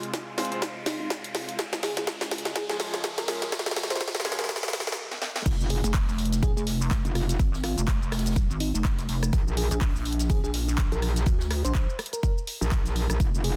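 Aggressive and bouncy, this bass house cut from a longer piece runs at 124 BPM in F minor, with a swung sixteenth-note feel. It opens on a build-up where a bell-like FM electric piano carries the melody through chorus and digital delay, while a sweeping, resonant sawtooth pad with a filter swell holds sustained chords and bright grand piano stabs pump against the kick. A punchy, up-front electronic kick and a layered house kit with a cracking snare, handclaps, rim clicks, shaker and warm hats drive the section, and an electronic riser in the background climbs toward a brief stop at 5.0 seconds. The drop lands at 5.5 seconds with an impact, as a distorted, metallic FM wobble bass takes over the low end, joined at 5.8 seconds by a heavy, detuned, saturated pluck wobble bass, both pumping. A very quiet acoustic big-band kit adds a natural, roomy snare and hi-hat beneath the electronic drums, and the chords fall away at 9.3 seconds. 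The mix is dense and heavily limited, with light reverb.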